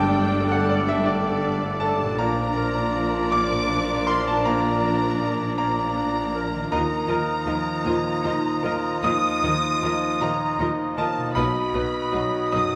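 A moving, tender film-score passage opens with the full orchestra sounding together in 6/8, its rubato phrasing giving it an unhurried, breathing quality. Up front, a bright grand piano with long sustain spreads its accompaniment across a broad span, while muted violins, veiled and bowed with vibrato and a soft attack, carry the melody; a second con sordino violin line sits in the background. A solo cor anglais with light vibrato and a distant, roomy clarinet of darker color add second lines, and a vintage French horn section holds mellow sustained chords behind them. Quiet harp arpeggios ring beneath, as violas, cellos and rich, lush double basses fill out the accompaniment and bass. The harmony moves from Gsus2 through Bb and Ebsus2 to B in a wet scoring-stage reverb, and this 12.8-second cut from a longer piece ends there.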